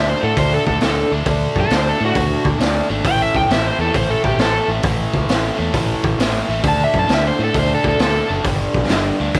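A raw, close recording with light reverb and a small-room ambience carries this gritty, raunchy stretch of blues rock and southern rock, cut from a longer piece and running at 134 BPM in 4/4 with a swung eighth-note feel. An overdriven slide guitar takes the melody from the start, its tone warm and fingered as it ranges from F#4 to A5 before dropping out at 8.3 seconds. Beneath it, a bright, picked electric guitar, double-tracked and compressed, drives the riff up front in the low and middle register, while a growling fingered bass with its own overdrive adds punch down to F#1. The drum kit enters at 0.4 seconds with a saturated, mid-forward sound, a punchy kick, a medium-tuned snare, hi-hat and a rolled-off top. The harmony moves through D5, A5, back to D5 and on to G5 in a lean power-chord progression.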